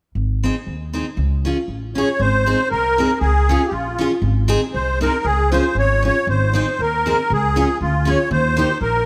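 A reedy musette accordion with shimmering musette tuning carries the melody up front, entering at 2.0 seconds over an already bouncing accompaniment. This short cut from a longer alpine folk piece moves at a jolly 118 BPM in 2/4, in Ab major with a light swing on the eighth notes. Underneath, a woody, dark pizzicato upright bass on steel strings anchors the low end from 0.2 seconds, and a bright, full-bodied jumbo steel-string acoustic guitar, picked on fresh strings with an audible finger squeak, fills out the accompaniment. The harmony sways between Ab and Db before turning to Eb near the close. A moderate scoring-stage reverb gives the up-front trio a sense of space.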